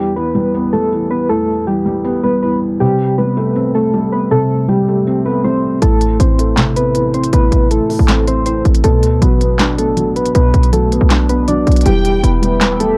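Brooding, eerie trap hip hop in E minor at 159 BPM with a half-time feel, this excerpt is cut from a longer piece. It opens on soft, round electric-piano-like synth keys carrying the melody with chorus and tremolo, over a felt-muted upright piano whose dark, intimate tone carries audible action noise, as the chords move from Em to C5. At 5.8 seconds a punchy, tight 808-style bass with transformer saturation arrives up front alongside an electronic trap kit of sharp snare, crisp hi-hats and handclaps, while the harmony continues through Am to Bm. Near 11.9 seconds a lush, distant violin section touches a brief line with analog delay, while a bright, detuned pad with a resonant filter sweep swells in the background. The sound is dry and gritty, with a cassette-tape character.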